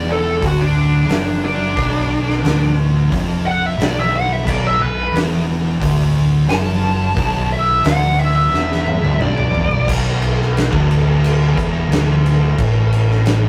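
Stoner and doom metal with a hypnotic, ominous mood, cut from a longer piece, in which a compressed fuzz lead guitar with wah plays an up-front solo until a drum fill closes it at 9.9 seconds, over two low fuzz guitars on the riff (one warm and forward, the other dark and very quiet), a round, punchy fingered bass with tube saturation, and an oversized low-tuned acoustic kit with a boomy kick, fat snare, toms, hi-hat and dark cymbals pumping through a big, gritty room in a rough rehearsal-room sound.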